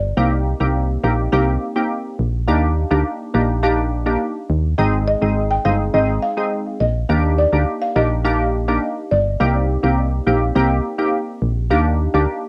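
A straight 4/4 dancehall groove at 104 BPM sets a summery, bouncy mood in Eb major, with a punchy, round FM bass sitting up front under a crystalline, nasal wavetable pluck whose detuned unison, filter sweep, chorus and cassette-tape character add sheen to the Cm7, Ebmaj7 and Ab changes. From 5.1 to 9.2 seconds, a woody, buzzing marimba played with medium mallets carries the melody in its upper register, its dry, airy tone trailed by analog delay. The whole cut has the light reverb and homespun feel of a cassette home recording, lifted from a longer piece.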